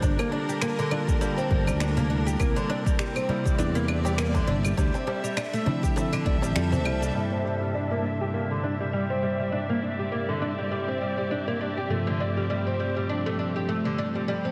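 A bright, woody oud sits up front, its double strings plectrum-plucked in arpeggios through a low-pass filter, delay and shimmer reverb. This earthy organic downtempo groove moves at 101 BPM in 4/4 with a swung sixteenth feel. A clean tine electric piano, heard through built-in speakers, plays accompaniment with sidechain pumping, filtering and delay. A focused chamber string section bows sustained chords with vibrato, pumping and shimmering behind it. A growly, direct fretless electric bass anchors the low end, and a deep, overdriven electronic kick punches up front alongside layered, overdriven electronic cabasa, claves and finger snaps, while a very quiet clay-shell darbuka adds soft, close and dry hand strokes. The kick stops at 6.4 s and the bass and darbuka fall away at 7.1 s, then from 7.2 s filter sweeps move across the oud and electric piano as the harmony shifts from Gm7, C7 and Dm9 toward C7/G and F/G, all within a lush hall reverb and a heavily compressed, radio-like warm sound.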